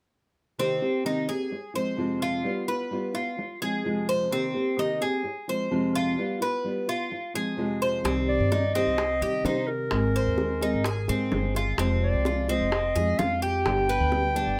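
Latin music in the Cuban son and guajira style, this danceable C minor cut from a longer piece moves at 129 BPM in a straight 4/4, opening at 0.6 seconds with a thumb-plucked classical nylon-string guitar and the bright, metallic picked arpeggios of a Cuban tres over a Cm7, Fm and G7 progression. Near 8.0 seconds a woody, thumpy pizzicato upright bass enters, joined by tight, high-tuned bongos played with soft hands and a mellow, classical-style solo clarinet carrying the melody as the harmony shifts toward Abadd9. Close, detailed microphones and light reverb keep the guitar, tres, bass and clarinet up front, while the bongos have a vintage, band-limited tone.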